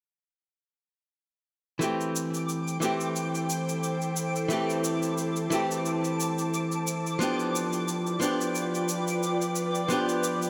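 At 1.8 seconds a dark, clean archtop guitar enters up front, picked and compressed, alongside a natural-sounding cabasa played with brushes, setting a smooth, relaxed sunset chillout groove at 89 BPM in C major with a light 16th-note swing, moving from C6 to G7 at 7.2 seconds. A sparkling granular texture with an octave-up shimmer and a mellow, detuned pad with ensemble chorus soon join, the texture twinkling while the pad holds sustained chords high above. The whole excerpt sits in a bright 1980s-style digital production bathed in a wet plate reverb.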